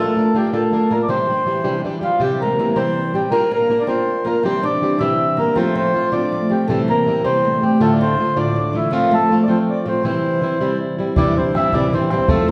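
A bright, cheerful Celtic jig in 6/8 opens with three parts at once: a mellow, reedy accordion carrying the melody up front, a woody, fretless oud with double strings playing a deep second line beneath it, and a fingerpicked, plugged-in acoustic guitar comping in a swing style. The accordion sounds full and close-miked, with a dry tuning and the character of a tone chamber. The guitar is dark and boxy, and it sits as far forward as the accordion while the plectrum-plucked oud stays a little further back. The harmony moves through chords such as Bb, Cadd9, C, F and Dm, and the band plays live in one room bathed in a large, wet studio reverb. At 11.2 seconds a tight, damped bodhran joins with a small-room sound for the closing stretch, until this section of a longer piece cuts off at 12.5 seconds.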